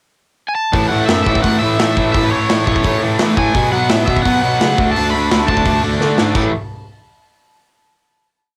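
A fast, straight punk rock beat at 171 BPM in 4/4 drives this short, rebellious and upbeat piece, which opens with a brief pickup before the verse kicks in at 0.7 seconds. The big acoustic rock drum kit sits up front with bright cymbals, a medium-tuned snare and a boomy kick, carrying a punk fast groove and closing the verse with a fill at 6.0 seconds. Two electric guitars pound out driving eighth-note power chords: one is a cranked, overdriven stack sitting further back in the mix, and the other is tight and distorted. Beneath them, a dark, punchy bass clarinet with a smooth top plays a driving eighth-note bass line in a classical style. Above the band, a crunchy overdriven lead guitar with a cassette-tape tint and analog delay carries a motif-based melody of song-like phrases, entering just ahead of the others at 0.5 seconds. The harmony moves from A through B5 and D5 to a final A5 chord, and the home cassette recording has little reverb, giving a raw, dry sound.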